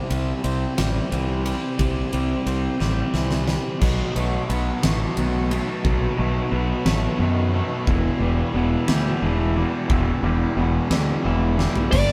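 A growly fuzz bass sits up front in this hopeful, cinematic post-rock build-up, driven by a huge arena drum kit with a fat snare, punchy kick and bright cymbals that fills at 2.8 and 11.6 seconds, as a clean, twangy guitar arpeggiates and a phaser-tinged overdriven guitar riffs in the background over very quiet, smooth bowed strings; a compressed, distorted guitar riff joins at 3.8 seconds, the harmony moves from C through B7 to Em, and a dark, biting lead guitar cuts in on a single high note just before the cut, all played live in one room with moderate reverb and a faint mains hum.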